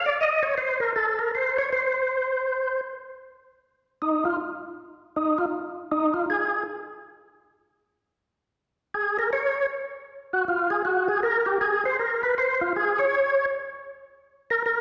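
Bathed in the wet reverb of a recital hall, this bluesy, late-night jazz fragment in Bb minor swings at 158 BPM as a lone percussive tonewheel organ, fat and lightly overdriven with key click, second-harmonic percussion, chorus vibrato and a slow rotary speaker, sits up front from the start, pauses at 6.6 seconds and returns at 8.9 seconds.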